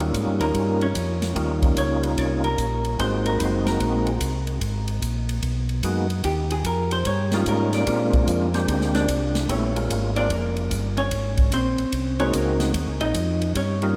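Soul jazz organ trio in Eb mixolydian, swinging at 148 BPM in 4/4 with a bluesy feel, heard as a brief cut from a longer piece. An overdriven tonewheel organ carries the melody, its gritty, percussive tone colored by chorus vibrato and a slow rotary speaker, while a second tonewheel organ supplies the bass line with a smooth, clean sound, audible key click and its own chorus vibrato, sitting up front. A big-band drum kit swings on hi-hat, ride cymbal, snare and kick, with a punchy kick, a medium-tuned snare and an airy, polished hall character. A dark, picked hollow-body electric jazz guitar enters at 0.4 seconds and is featured as the soloist, its compressed tone weaving over changes that move from Eb9 through Ab9 and Abm7 back to Eb9, then on to Bb9 and Ab9 before returning to Eb9. The whole trio sits in a vast, echoing cathedral reverb that lends the groove a cavernous sheen.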